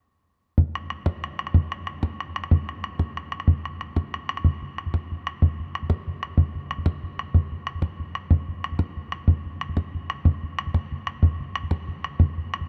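A lone bodhran carries this lively, bright Celtic folk excerpt in 6/8 with a straight feel, entering at 0.6 seconds and playing through to 12.6 seconds. The drum sounds damped and tight, its acoustic skin captured close and placed up front. Around it hangs a huge ambient reverb with a long tail, setting the playing in a vast, echoing space. The piece is cut from a longer work, and its opening passage gives way to a new section at 4.4 seconds. The contrast between the damped, near drum and the cavernous room gives the recording its character.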